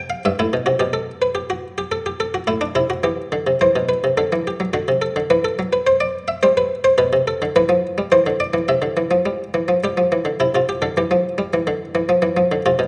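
Elegant and lively, this baroque-style two-part invention in 3/4 at 106 BPM, cut from a longer piece, features a solo buff-stop harpsichord with a muted, lute-like pluck, placed up front in a reverberant recital hall, tuned to A4 = 444 Hz and moving from A minor to C major at 7.0 seconds.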